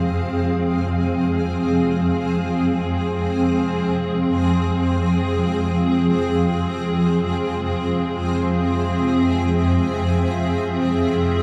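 Dark ambient drone in free time, this ominous, desolate fragment, cut from a longer piece, rests on a single F minor chord in F harmonic minor, tuned to A4 = 442 Hz. Up front, a swarming low drone of detuned sine voices in unison warbles and evolves with a tense, vintage character, a moving notch filter shifting its colour as it holds from F2 to F3. Beside it, a granular cloud pad sustains blurred, full-bodied chords between C4 and F5, swelling in slowly and releasing long. Further back, a bubbling sawtooth texture with chorus steps through random, resonant filter changes, fading in across the full 11.4 seconds. A wet cathedral reverb with a 5.3-second decay surrounds the parts in a dark, warm production.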